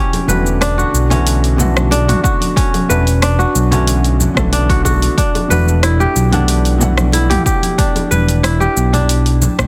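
A dense, heavily limited modern master sits in a small room reverb, giving this hypnotic, mystical slice of organic downtempo a close, compact sound at 92 BPM in a straight 4/4, in E dorian. Up front, a crisp, ringing kora plays fingerpicked arpeggios through tape echo, while a soft, felt-muted upright piano adds mellow, intimate accompaniment with audible action noise, tape echo and sidechain pumping until it stops at 8.1 seconds. A smooth synth bass, dark and detuned with a sawtooth and square-wave edge, fast attack, sustained notes and vibrato, sits prominently in the low register, thickened by tube saturation and pumping with the sidechain. The deep house drum kit brings cabasa, hi-hat, rim click and toms with an overdriven, layered, produced character, and congas and bongos stay compressed and saturated in the background. A punchy, overdriven electronic kick joins at 2.2 seconds, and the harmony moves from Bmadd9/E to Em7 at 5.2 seconds in this section cut from a longer piece.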